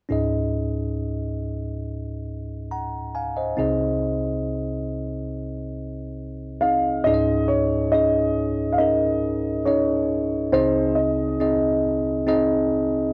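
A heartfelt, emotional pop ballad at 69 BPM in a straight 4/4, this excerpt from a longer piece is tuned to A4 = 445 Hz and moves between Dbsus2 and Ab/C chords. A bell-like, bright tine electric piano sits up front as the accompaniment throughout, while a dark, mellow concert grand piano carries the melody from 6.6 to 11.8 seconds. Both pianos bear a cassette tape coloring, and a moderate spring reverb surrounds this home recording on cassette.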